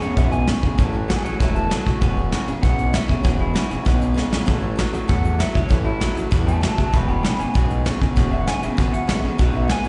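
An up-front soft brush drum kit with a punchy kick drives this rollicking, retro rockabilly excerpt from a longer live gig heard through the venue's PA in a reverberant recital hall, snapping into a brief fill at 4.2 seconds while a gritty, saturated synth bass growls beneath, a dark, slightly broken-up electric guitar riff with slapback echo churns low, a bright, twangy lo-fi electric lead rings out with slapback echo and analog delay, and a full-bodied steel-string acoustic guitar, finger squeaks and all, picks along in the background.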